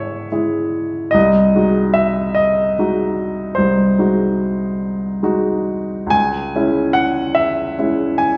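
Classical romantic nocturne for solo piano, a wistful, melancholic fragment of a longer piece in a rubato 12/8, where a clear, polished baby grand sounds present and up front while a wet recital hall reverb lends the sense of hearing it from further back in the room.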